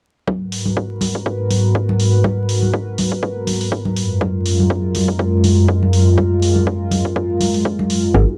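A smooth, detuned analog pad sits up front, pumping against the sidechain with chorus and a cassette-tape haze as it holds G#m9 and then F#maj9 in this relaxed deep house excerpt. Beneath it, a punchy, overdriven electronic kick and a gritty hi-hat carry a gently swung 4/4 groove, while bright, hard-handed congas add an acoustic, small-room snap. Near the close at 8.1 seconds, a muted, filtered dub chord stab with phaser appears alongside a brief, round and woody FM bass note, all set in a short booth ambience with a homemade cassette character and vinyl crackle.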